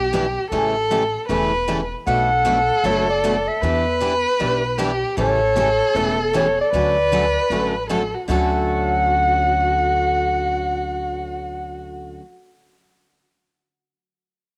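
Acoustic string swing in D major at a lively, swinging 154 BPM, with a woody, thumpy pizzicato upright bass on gut strings colored by transformer saturation and two picked guitars (a bright, full-bodied steel-string dreadnought and a boxy swing-style guitar) comping through Em7, A7, Bm7 and Dmaj7 changes, while an expressive bowed violin with vibrato and portamento carries a second line and a mellow, smooth-topped clarinet with vibrato and scooped notes enters up front at 2.1 s to take the jazz solo, the violin, guitars and clarinet sharing a plate reverb and the clarinet carrying a cassette-tape tint in this homespun cassette recording cut from a longer piece.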